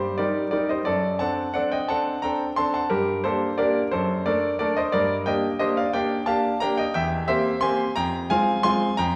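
Heard from further back in a wet recital hall with a 1.6-second reverb, a bright, polished baby grand piano plays alone in this restless, elegant classical-period sonatina in G minor, cut from a longer piece. The solo moves in a rubato 6/8 at 59 BPM, ranging from E2 to C6 with short sustain. Its harmony passes from Cm/G through D7/F# to Gm, then C7/E, and reaches Fm at 8.0 seconds.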